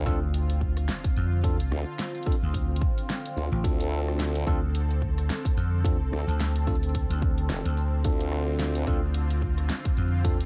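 A sub drop opens this glitch hop excerpt, sounding as a very quiet impact that ends by 1.4 seconds while a detuned sawtooth analog pad holds smooth, sustained chords on a Dm7 in D minor. At 109 BPM in 4/4 with a 57% swing on the sixteenths, the mood is playful and gritty. A punchy, layered electronic kick and a pop kit with a fat snare, hi-hat, rim click and tambourine sit in a small room, while a round, amped vintage slap bass stands up front. Alongside it, an up-front formant-sweep wobble bass built from sawtooth and sine adds compressed, tube-saturated growl with chorus until 8.9 seconds. Bright, clean tine electric piano stabs ring out with delay and sidechain pumping, and the chorused pad pumps with sidechain as well, a moving notch colouring its long release.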